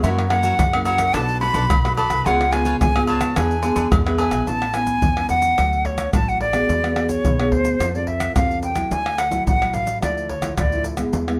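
An airy, vibrato-rich silver concert flute sings the melody up front from the opening, over crisp picked cavaquinho that drops out at 4.5 seconds, a thumb-plucked classical nylon-string guitar, a woody, thumpy pizzicato upright bass and hard-handed agogo bells, tube shaker, deep surdo, pandeiro and tamborim in this joyful, festive samba-and-choro passage at 108 BPM, with the flute falling silent at 10.8 seconds as the rest carry on in moderate studio reverb.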